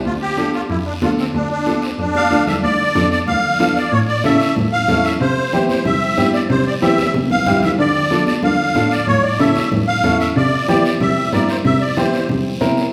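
A straight, driving cumbia groove in four sets this fiery, danceable latin excerpt in motion, with bright, high-tuned congas sitting distant in a large room and a raspy guiro scraping beneath them. The reedy musette accordion carries the melody up front, its shimmering tuning giving the line an airy sparkle. A cello holds down the bass, bowed by a single close player with light vibrato and a soft attack, while a clear upright piano adds accompaniment from 0.4 seconds, its woody tone short in sustain and touched with audible action noise. Drum fills at 2.1 and 7.0 seconds punctuate the music, the first leading into a longer second section where the harmony cycles through a minor chord, A and C before coming around again. The ensemble sits in the wet bloom of a recital hall or church, lending the dance a spacious, resonant sheen.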